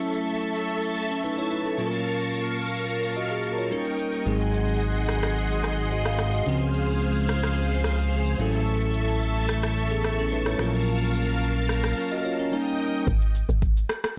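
Amapiano at 109 BPM with a relaxed, warm mood, cut from a longer piece: a bell-like tine electric piano with phaser plays over lush, vintage string-machine chords carrying ensemble chorus and sidechain pumping, while an electronic afro-pop kit keeps time with a deep kick, rim click, shaker and soft clipping on the snare. A fat, detuned analog bass with a filter sweep sits up front from 4.3 to 11.9 seconds, and at 13.1 seconds the piano and strings stop for a short drop where a woody, punchy log drum bass joins the drums. The dry, blown-out, overdriven recording moves through chords such as A6, Gbmaj7/Bb, Eb7, Ab7 and Dbmaj7.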